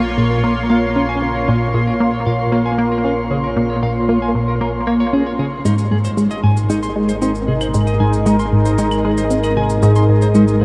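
Drenched in a shimmering reverb with a 6.5-second tail, the recording has a dark, warm production that suits this cosmic, expansive piece of sequencer-driven space music, cut from a longer work. Up front, a tight sequenced synth drives a detuned sawtooth riff with a plucky filter and chorus, its repeats trailing through tape echo. Alongside it, also up front, a sweeping resonant pad sustains bright, evolving chords with a slow filter swell and a long release, while a fat, thick analog bass holds the low end with a mellow, moving notch. A clean, scooped electric guitar picks arpeggios that gradually fade in over the whole clip, carried by tape echo. At 5.7 s, as the harmony moves from Bbm to Ab, cabasa and claves join with an analog, roomy character, their hits also echoing on tape.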